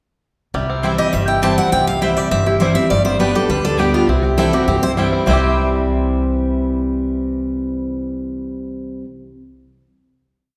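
A driving, joyful bluegrass piece opens with a full-bodied guitar playing alternating bass and strum, twangy banjo rolls and a woody, thumpy upright bass holding a two-beat root and fifth line, then a round mandolin chop on the off-beats sits in the background as a second up-front guitar carries a fiddle tune in running eighth notes at 1.0 s, all ringing in a reverberant hall before settling on a final chord at 5.3 s.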